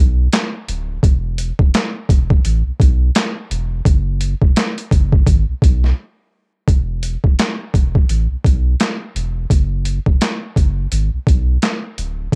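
A deep, round dub sub bass opens this tough, reflective boom-bap hip-hop excerpt, joined at 0.3 seconds by a gritty, pitched-down sampler-style drum kit with a thumpy kick, high-tuned snare, handclaps and hi-hat, overdriven and cassette-saturated up front in a dry home-recorded sound, swinging into a brief break at 6.0 seconds before the second section begins at 6.7 seconds.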